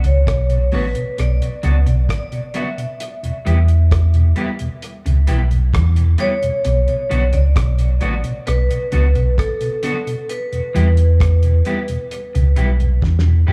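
A close, nearly dry room holds this meditative, serious roots reggae excerpt, where a round sine sub bass and a cloth-damped, thuddy drum kit with a fat snare sit up front. A ringing vibraphone carries the tape-echoed melody over a picked guitar riff in spring reverb, while a flute-like rotary organ hums and a dark, picked second guitar plays in the background through the Bm and Em changes until a drum fill at 13.0 seconds.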